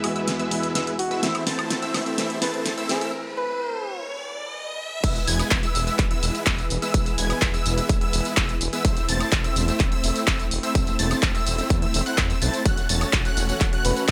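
A bright, pumping festival progressive house excerpt in E major at 126 BPM, triumphant and anthemic, opens on a build-up where a felt-muted upright piano with audible action noise, a background pad, a catchy plucky lead arpeggiating high up and huge supersaw chords ride sidechain pumping. A drum fill on a big-room kit with a huge snare, handclaps, tambourine and woodblock runs alongside an electronic riser and a veiled, bucket-muted trumpet playing a jazz-style melody with scooped notes. After a break, the drop lands at 5.0 seconds with a punchy, overdriven kick and a thick, beating detuned saw bass under chords moving through E, Am/E and F#m/E, the trumpet returning briefly at 13.8 seconds.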